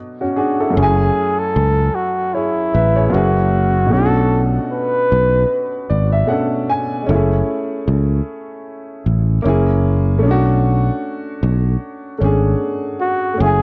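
A breathy flugelhorn with vibrato and scooped notes sings a mellow, jazz-style solo from 0.4 to 5.9 seconds and returns at 13.0 seconds in this hazy, nostalgic lo-fi hip hop piece at 76 BPM with a swung sixteenth feel, carried over Bm7, F#m9 and F#7 chords by an intimate, woody upright piano with audible action noise and long sustain and a direct, up-front fretless electric bass, all set in a small room with light reverb and a worn, warbling cassette-tape pitch drift.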